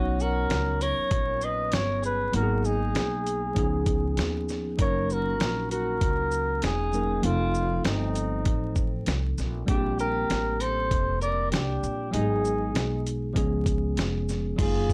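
A breathy, mellow flugelhorn opens this cool, relaxed jazz-hop excerpt, carrying the melody up front with light vibrato and scooped notes in a solo jazz style. It sounds together with a tine electric piano, worn and slightly out of tune, that plays clean accompaniment through a plate reverb, and a pizzicato upright bass with a woody, thumpy tone. A darker electric guitar at the edge of break-up, fingered and run through phaser and plate reverb, adds a quieter second line in the background. At 0.2 seconds a dusty soul sampler-style drum kit comes in up front, compressed and gritty, with a thumpy kick, a medium-tuned snare, hi-hat, shaker and crash cymbal. The groove sits at 98 BPM in 4/4 with a lazy swing on the 16ths, moving through lush extended chords in F# major, from Bmaj9 and G#m9 toward A#maj13 and a closing C#7. Light reverb frames the dry, hardware-style mix, and vinyl crackle gives it a lo-fi patina.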